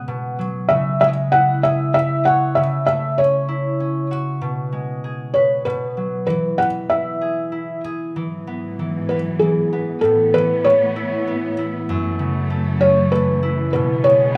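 Gentle and tender, this children's lullaby excerpt in E major moves at 97 BPM in a straight 3/4, with a soft, felt-muted upright piano carrying the melody up front, its mellow, intimate tone edged by audible action noise, over a ringing, fingerpicked concert harp accompaniment, while a dark studio string section enters at 8.2 seconds with expressive, bowed sustained chords full of vibrato and portamento, all set in a moderate recital hall reverb.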